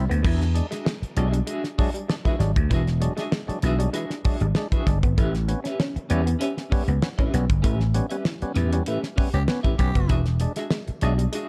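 Funk at 97 BPM in E mixolydian, this gritty, funky excerpt from a longer piece rides a damped 70s drum kit with a fat snare, tight kick and dark cymbals, and a growly, punchy vintage slap bass set up front, while the harmony moves from E9 to A9 and back. A lightly overdriven tonewheel organ with key click punches out stabs, a clean picked electric guitar with tremolo adds accompaniment, and a lo-fi, slightly broken-up guitar through a small old amp plays a riff in the background. The band hits an accent from 7.6 to 10.1 seconds, during which a raspy, breathy tenor saxophone growls a scooped G4 at 9.3 seconds, all in a dark, small-room production.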